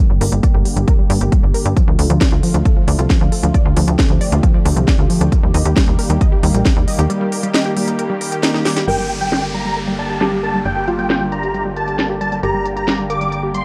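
A straight 4/4 pulse at 135 BPM drives this euphoric, emotional uplifting trance passage in G minor, cut from a longer piece and moving through Gm, Dm and Eb. A heavy, overdriven electronic kick sits up front alongside a layered techno kit with a cracking snare and smooth, filtered hats. Beneath them, a tight, nasal sawtooth-and-square sequencer bass pumps against the sidechain. A lush, detuned unison pluck spins arpeggios in the background under a filter sweep, carrying tape echo. The kick drops out at 6.7 seconds, and a break and drum fill lead to 8.9 seconds. There a huge, bright supersaw lead bursts in with phaser, digital delay and a sweeping filter, joined by a softly muted, intimate upright piano with thick felt, audible action noise and gritty sampler texture, while an electronic downlifter falls away beneath a dark digital ambience.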